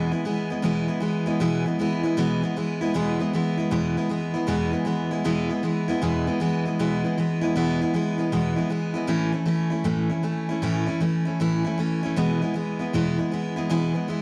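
A bright, up-front steel-string acoustic guitar rings through moderate echo-chamber reverb in this retro, rollicking rock excerpt at 156 BPM with a swung 4/4 feel in E major, its fresh strings, full jumbo body and audible finger squeak carrying a picked solo from E2 to E4 that moves from E to A at 9.1 seconds and back to E at 12.2 seconds.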